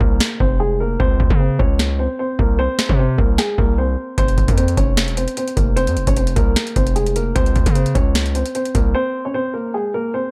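A saturated, distorted 808-style bass drives this menacing, eerie trap excerpt, its heavy sine tone carrying a noise layer and a fast attack that decays after each note. Alongside it, a booming analog drum machine with a deep kick, crisp snare and metallic hi-hats sounds tape-warm, as if re-recorded in a large room, and sits up front in the half-time groove. A mellow baby grand piano carries the melody throughout, intimate and natural with audible action noise and short sustain, shaded by a low-pass filter and a digital delay. The harmony moves through minor and suspended colours, from Fm through Bbmadd9 and Bb7sus2/C to an open F5, before settling on Abadd9. At 8.9 seconds the bass and drums stop, leaving the piano alone until the cut at 10.3 seconds, all wrapped in studio reverb and a dark, warm production.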